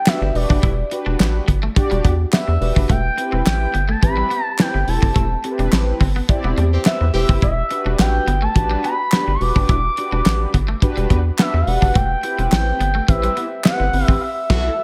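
A smooth, warbling portamento lead with chorus and delay opens this slick, funky slice of early-eighties boogie funk in E minor at 106 BPM, carrying the melody over round, detuned synth brass and a rubbery square-wave bass that sits up front. A dry, fat-snared 70s drum kit drives the straight 4/4 groove, while a twangy clean electric guitar riff and hollow group handclaps sit in the background, and a punchy horn section punctuates a band accent around 6.7 seconds and again at 14.5 seconds. Moving from Em7 to Am9/E and closing on B7sus4, the dreamy mix is soaked in plate reverb with a small-room ambience.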